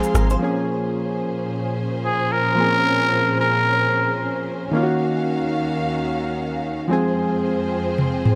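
Bathed in a lush hall reverb, this hypnotic, sultry afrobeats excerpt in Bb minor moves at 111 BPM with a 16th-note swing, as a raspy, growling solo trumpet sings up front until 4.4 s over round, airy chorused electric-piano-like synth keys and smooth bowed symphonic strings holding sustained chords through Bbm7, Ebm7 and Fm, while an electronic afro-pop drum kit of rim click, shaker and toms appears only briefly at the start and returns with a fill at 8.0 s.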